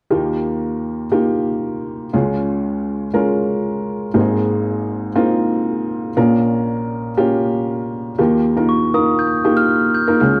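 A straight 4/4 pulse at 119 BPM carries this anthemic, uplifting pop fragment in Eb mixolydian, where a boxy, felt-muted upright piano with audible action noise sits up front and intimate through Ebadd9, Db, Abadd9 and Bbm chords from 0.1 s, a bell-like glockenspiel played with rubber mallets brings in a soft melody at 8.7 s, and moderate studio reverb and the warbly pitch drift of worn cassette tape colour the recording.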